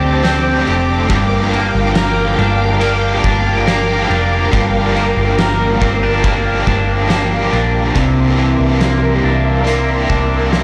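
A blown-out, overdriven recording in a moderate plate reverb carries this melancholic, ethereal dream pop excerpt in G dorian at 70 BPM, where a round, hollow-body fingered bass sits up front under twangy, slightly broken-up picked guitar arpeggios with tape echo, a compressed overdriven guitar with tremolo, and a vintage sawtooth string machine of cellos holding evolving chords through phaser and ensemble chorus, while an oversized low-tuned drum kit with dark cymbals, fat snare, punchy kick and tambourine enters at 0.2 s in the background, and the harmony moves from D7sus4 to Gm7 before shifting to C9 at 8.0 s.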